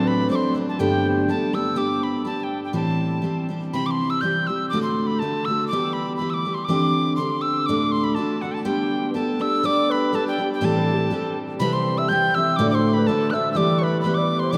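An airy, close-miked tin whistle with a crisp, chiffy attack and vibrato carries the melody of this cheerful, rollicking Celtic polka in G major at 122 BPM, over a full-bodied picked steel-string acoustic guitar with audible finger squeak, while a pure, soft-edged wooden baroque flute adds a second line at the start and again from 9.1 seconds, the ensemble heard in a vast, echoing cathedral space.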